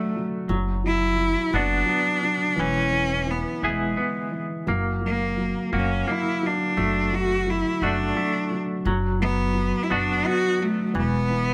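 Intimate and nostalgic, this acoustic folk-pop ballad moves in a slow, straight 6/8 at 57 BPM, cut from a longer piece. A clear, focused cello carries the melody up front, its bowed line biting and shaded with vibrato. Beneath it, a felt-muted upright piano gives soft, dark, mellow accompaniment, while a clean semi-hollow electric guitar picks arpeggios coloured by tremolo. An upright bass enters at 0.5 seconds with woody pizzicato notes low in its register. The harmony passes through Bm/F#, E, F# and D/F# before returning to Bm/F# and settling on E5, all set in a light reverb.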